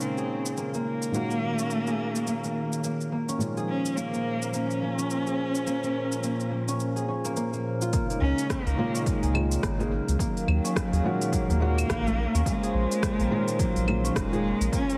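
A swung sixteenth-note groove from a tape-warm afro-pop kit of claves, hi-hat, rim click and shaker carries this earthy, meditative organic downtempo fragment, where an expressive bowed cello with vibrato and portamento sings over a felt-muted upright piano with audible action noise, a warbling vintage analog pad under a filter sweep, and bright, ringing harp arpeggios, set in lush hall reverb and a heavily compressed radio-like sound; a punchy, overdriven electronic kick joins at 7.9 seconds and a round, deep analog bass follows at 8.2 seconds.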